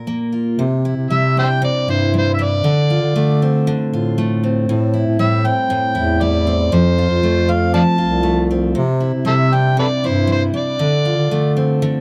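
A gritty, overdriven harmonica carries the melody with tongue slaps and scooped notes from 1.1 seconds in this sunny, heartfelt acoustic pop excerpt at 118 BPM in C mixolydian, over a full-bodied, picked steel-string dreadnought guitar and a dark, soft-attacked bass clarinet on the low line, all captured with close, detailed microphones and light reverb as the chords move from Cadd9 through Dm7, Am7 and F.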